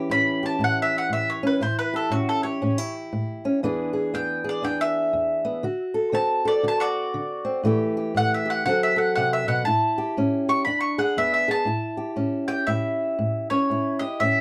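A dark, close booth sound with a short room tail frames this gritty, swaggering acoustic country blues in A mixolydian, swinging at 119 BPM in 4/4. An old ladder-braced acoustic guitar with aged strings plays a boxy, fingerpicked accompaniment. An up-front mandolin with doubled strings carries a picked, woody solo over A7, E7 and D7 changes through 11.7 seconds, then the music moves into a new section that runs to 14.4 seconds.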